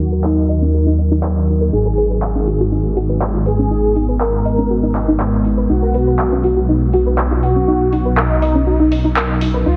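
Opening on a menacing, saturated detuned saw bass up front beneath a deep, moody ambient pad, soft round plucked arpeggios and a smooth supersaw melody with gritty 12-bit sampler texture and delay, this hypnotic, dramatic melodic techno excerpt moves from Ebm through Abm to B under filter sweeps, as an overdriven house kit of handclaps and hi-hat enters at 0.2 seconds, all through a heavily compressed, radio-like sound with light reverb.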